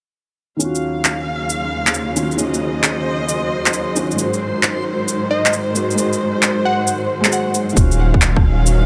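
A felt-muted upright piano, soft and dark with its action noise audible, carries the accompaniment in this ghostly, rainy future garage fragment. A filter sweeps across it from 0.6 to 7.8 seconds, while digital delay and sidechain pumping shape its mellow chords. Beside it, a lush symphonic string section holds bowed, vibrato-rich chords up front, also pumping, as the harmony moves from Ebm9 to Ab7 and back. Swung electronic shaker, handclaps and rim click sit up front and tape-warm, and a reversed, granular texture drifts in the background with its own reverb. Later, a punchy, detuned unison lead with a sub octave offers a brief catchy phrase through digital delay. At 7.8 seconds a round sine sub bass with tube saturation and a tight, layered kick drum arrive, inside a huge ambient reverb.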